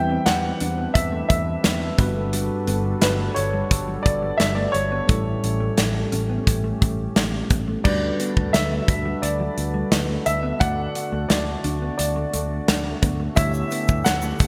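1980s-style pop at 87 BPM, glossy and uplifting, in which a natural baby grand piano carries the melody with delay over a bell-like tine electric piano, a smooth, warbling analog pad with chorus, a growly fretless bass, a dark, very quiet fingered electric guitar riff and an up-front studio drum kit with gated reverb, while a grainy tube shaker enters at 13.4 seconds, all set in a lush hall and bright digital production in this short cut from a longer piece.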